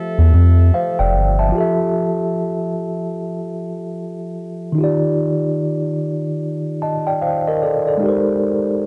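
A mellow tine electric piano with a cassette-tape tint sits up front through this cosy, dreamy hip hop excerpt at 74 BPM in F major with a swung 16th feel, joined by mellow classical-style brass ensemble chords until 1.5 seconds and a deep, round, dark analog bass from 0.2 seconds, over chords moving from Fmaj9 to Ebmaj9 and Abmaj9 in a dry, gritty recording with light reverb.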